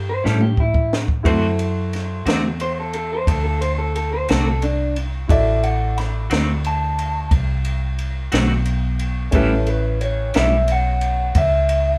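Gritty and rollicking, this slow blues in 12/8 is cut from a longer piece and sounds like a band playing live together in a small room. A clean, picked electric guitar with harmonic tremolo takes the solo, while a slightly broken-up, lo-fi guitar through a small old amp plays a compressed second line, a warm, woody upright piano accompanies, and a dark, round, foam-muted fingered bass sits up front. A compact cocktail kit with a punchy kick, high-tuned snare, ride and toms opens with a fill from 0.2 to 1.3 seconds, and the harmony moves from A7 to D7 before returning to A7 at 9.3 seconds.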